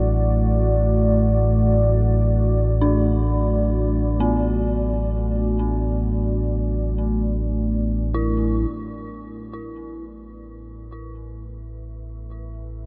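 A deep, rumbling drone of sawtooth and triangle tones opens this cavernous dark ambient excerpt in free time, joined from the start by a moody, warbling pad of detuned sawtooth and sine voices that sustains chords over D and is shaded with chorus, both parts up front and bathed in their own reverb. At 2.8 seconds an eerie, inharmonic FM bell enters with decaying arpeggios, coloured by chorus, phaser and delay, and the piece shifts into a new section at 8.7 seconds. The production is dark, set in a huge ambient reverb with a 7.4-second tail.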